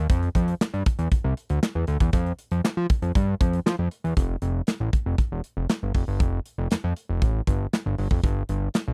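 A straight 4/4 groove at 118 BPM drives this danceable, smooth slice of early-eighties boogie funk. A modern studio drum kit sits up front, its punchy kick, medium-tuned snare, hi-hat and handclaps sounding acoustic, airy and polished in a small room, while a fat analog bass spans E1 to F3 with thick, detuned sawtooth and square-wave tones, a fast attack, sustained notes and a filter sweep, settling into F lydian from 4.2 s. The dry, close recording in a 1970s studio style keeps both parts near and intimate.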